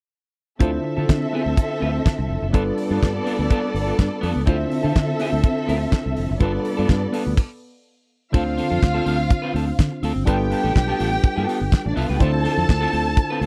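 A dry, close 1970s-style studio sound frames this driving, glamorous disco excerpt at 124 BPM in D dorian, cut from a longer piece, with all five parts playing from 0.6 to 13.5 seconds over a Dm7 to G9 vamp, broken by a stop from 7.4 to 8.3 seconds before the second section. An up-front damped drum kit with a fat snare and tight kick leads the mix over a round, foam-muted fingered bass, while a twangy, slightly broken-up electric guitar and a worn, slightly out-of-tune tine electric piano heard through a combo amp fill in the accompaniment. Above them a dark, lush string section carries a second line with expressive vibrato and portamento.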